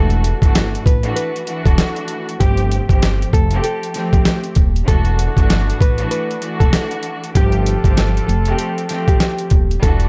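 A swung boom-bap hip-hop groove at 97 BPM in 4/4 drives this gritty, moody excerpt, with an up-front, compressed sampler-style drum kit of thumpy kick, medium-tuned snare and hi-hat, a woody pizzicato upright bass, a fingerpicked nylon-string guitar melody carrying tape echo over a rich, smooth bowed string section colored by cassette tape, and a brilliant trumpet section entering in the background with stabs at 4.9 seconds, all set in a dark studio reverb as the chords alternate between E9sus4 and G9sus4.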